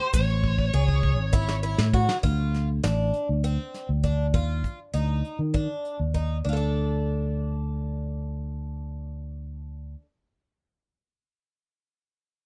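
This short cut from a longer progressive instrumental opens with a distorted, bluesy electric lead guitar playing a high note through digital delay for barely more than a second, over a bright, boxy twelve-string acoustic guitar picking octave-doubled arpeggios with audible finger squeak. Almost at once a growly, amped fingered bass sits up front, a soft brush kit with a tight kick and medium-tuned snare plays a fill from 0.4 to 2.2 seconds, and a grainy tube shaker sits in the background until 1.8 seconds. The music moves at 200 BPM in eighths in 7/8, with a straight feel in D phrygian, and the mood is tense and driving. Harmony shifts from Amaj7 to Dm7 at 2.2 seconds, then Dm and finally a bare D5, while the drums stop at 6.3 seconds, leaving the shimmering twelve-string and the bass to carry the closing stretch. The sound is dry, with little reverb, in the rough balance of a home demo mix.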